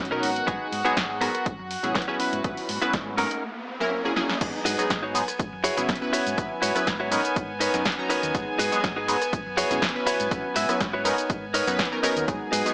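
Nostalgic and groovy, this filtered disco house excerpt moves at 122 BPM with a lightly swung sixteenth feel, built on a punchy, detuned sawtooth polysynth comp with chorus and phaser, a clean, direct-recorded electric guitar riff, and reedy, gut-string chamber violins holding sustained chords, all pumping against the kick under a low-pass filter. A dark, round hollow-body bass sits low beneath a punchy analog drum machine of snare, rim click, shaker, hi-hat, ride and crash, while an up-front electronic kick enters at 0.5 seconds and chords cycle through G#m7, F#7sus4/G# and Bmaj9. A background riser builds from 2.2 seconds into a drum fill and the drop at 4.4 seconds, the whole mix heard through an echo-chamber reverb and a small-speaker sound.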